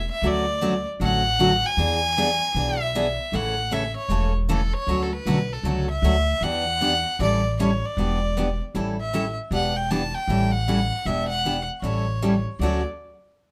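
Acoustic string swing in the jazz manouche style, playful and swinging, this short cut from a longer piece has a clear, bowed violin with light vibrato and an airy, nasal edge carrying the melody up front. Beneath it, a woody, thumpy pizzicato upright bass on gut strings anchors the low end, and a bright, full-bodied picked steel-string jumbo guitar joins at 0.2 seconds to supply the chords. Light reverb adds a touch of space, and the harmony moves from a Dmaj7 opening into a passage starting at 6.4 seconds that alternates Em chords with A7 and A6 before settling back on Dmaj7.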